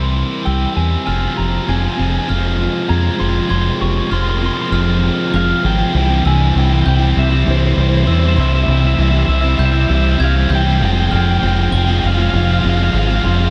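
Cinematic and brooding, this post-rock passage, cut from a longer piece, builds through its opening bars in a straight, steady four. A deep dub fingered bass sits up front, round and punchy, beneath a bright, picked distorted guitar riff, and at 1.1 seconds an overdriven semi-hollow guitar adds a second, hollow-bodied riff bathed in spring reverb and slapback echo. In the background, a lo-fi guitar through a small old amp picks slightly broken-up arpeggios with harmonic tremolo and slapback echo until 5.9 seconds, while a glockenspiel played with soft plastic mallets rings out mellow, bell-like arpeggios up high. From 0.5 seconds another guitar through a small old amp carries a fingered, compressed melody, dark in tone and touched with slapback echo. A very quiet chorused pulse-width pad shimmers with retro, detuned sustained chords underneath, as the harmony moves between C and Fmadd9 in a light reverb.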